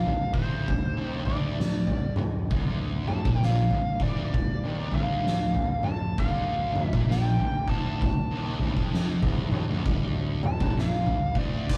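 Stoner and doom metal, ominous and heavy, cut from a longer piece and held on a single chord with a swung feel. An oversized, low-tuned acoustic drum kit sits up front with a boomy kick, fat snare, dark cymbals and a gritty, saturated stone-room sound, while two thick fuzz guitars grind out a low riff in the background and a very quiet overdriven picked bass adds a growly, punchy edge. Above them a fuzz lead guitar carries the melody through wah, distortion and delay, all captured as a rough rehearsal-room recording with light reverb.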